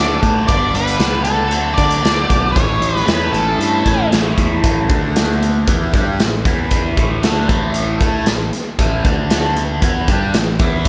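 A dark, fuzzed lead guitar plays a short melody over a bright, double-tracked stack guitar riff colored by phaser and slapback echo and a round, overdriven bass, with an up-front acoustic drum kit, its punchy kick and medium-tuned snare, arriving at 0.2 seconds. This driving, confident classic rock cut moves at 116 BPM in A mixolydian through G, D and A chords, then the lead stops at 4.1 seconds and the band settles into A5, D5 and E5 changes from 4.6 seconds. Lush hall reverb gives the whole band a big arena sound.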